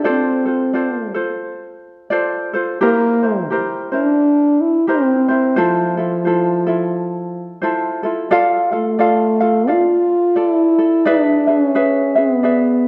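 Bathed in a lush recital-hall reverb, this short excerpt from a longer Hawaiian piece drifts along with a languid, dreamy swing. A mellow, punchy French horn with a smooth top carries the melody up front in a classical solo style, while a light, warm, thumb-plucked acoustic ukulele plays the accompaniment beside it. The harmony glides from F6 through C7 and Fmaj7 before shifting to Dm at 8.3 seconds and ending on E7.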